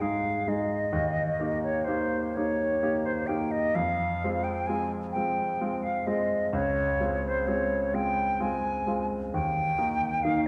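A slow 6/8 lilt at 43 dotted-quarter beats per minute stretches and yields in rubato, giving this romantic classical duo a tender, lyrical breath. The concert flute carries the melody between C5 and Ab5, its tone pure, warm and expressive, with vibrato and a crisp attack on each note. Beneath it, the grand piano supplies the accompaniment from a deep Db2 up to Ab4, sounding clear yet slightly worn, and both instruments sit up front. The harmony opens on Ab, then moves through Eb, Fm at 3.8 seconds and Dbmaj7 before settling back on Eb. A wet recital hall reverb with a 1.5-second decay places the listener further back in the room, and this 10.5-second excerpt is cut from a longer piece.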